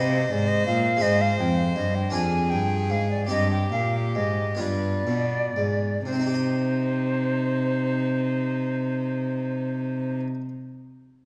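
A pure, vibrato-laden silver concert flute sings the melody over a close, nasal violin second line, a brilliant Italian-style harpsichord and a rich, up-front gut-string cello bass in this introspective, solemn baroque-style sonata excerpt in C minor and 6/8, tuned to A4 = 437 Hz, moving with rubato at 39-56 BPM, slowing through its first 6.1 seconds before the harmony returns to C minor, and set in a wet concert-hall reverb.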